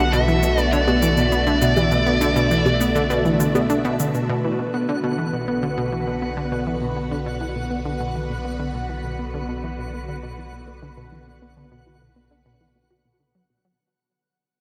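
A detuned sawtooth pluck riff sits up front through this cut from a longer piece of ambient, sequencer-driven space music in B minor, its fast, decaying notes thickened by chorus and analog delay. Around it, a swirling vintage string machine holds slow-attack chords colored by ensemble chorus and phaser, while a deep, dark analog bass sustains a low B underneath at a steady 101 BPM in straight 4/4. At the opening, a distorted, high-gain electric lead guitar picks a short melody through analog delay and drops out at 3.7 seconds, as electronic shaker and bongos, echoed by their own delay, carry on until 4.3 seconds. From that point the harmony moves from Bm7 to Bm, the music begins a fade-out, and a filter sweep moves across the synth arpeggio sound. At 4.7 seconds a faint, twinkling granular texture enters with an octave-up FM shimmer and its own built-in reverb. A huge, wet ambient reverb, one of the most prominent elements in the mix, gives the piece an expansive, mysterious atmosphere.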